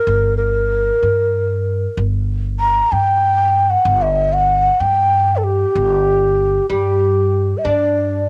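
This short fragment of a Persian modal ensemble, recorded at home on cassette, sits in a moderate studio reverb. It moves slowly at 63 BPM in dotted quarters, with a straight 6/8 pulse in G avaz esfahan, and the mood is melancholic and soulful. A breathy, mellow ney carries the melody from the first moment, up front and expressive, with a straight, tongued tone, rolled-off highs and a plate reverb. An upright bass enters at 0.1 seconds, plucked pizzicato on steel strings, with a growly, woody low end also placed up front. At 6.7 seconds a fretless oud joins quietly with a plectrum-plucked second line on double strings, its tone coloured by cassette tape and a plate reverb.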